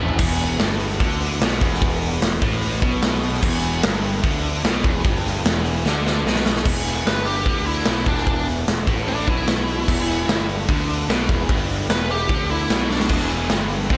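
A punchy, small-room hard rock excerpt at 149 BPM opens with a drum fill on an up-front, bright-cymbaled kit, driving fuzzed bass, two crunchy picked riff guitars with slapback echo, a double-tracked sludgy guitar that drops out at 6.7 seconds and returns at 13.1 seconds, and a very quiet, gritty tonewheel organ through a fast rotary speaker holding sustained chords, before a dark, bluesy lead guitar solo enters at 7.1 seconds to give the anthemic, swaggering groove its voice.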